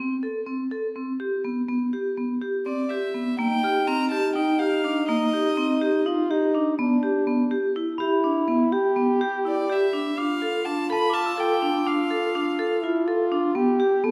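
Hard-mallet vibraphone underpins this playful, restless chamber piece in 7/8, its metallic, ringing arpeggios and fast motor vibrato sitting up front from the opening Am7 to the final G. A lone violin enters at 2.7 s with a melody in two short phrases, bright and slightly nasal, with an airy bow and light vibrato. At 3.4 s, as the harmony shifts to Eb6 and the second section begins, a clear French horn takes up a classical-style second line with its own vibrato and holds it to the end. Behind them, a glockenspiel played with hard plastic mallets adds brief bell-like, smooth touches of texture. A moderate scoring-stage reverb and a dark, warm production give the cut from a longer work a warm, roomy finish.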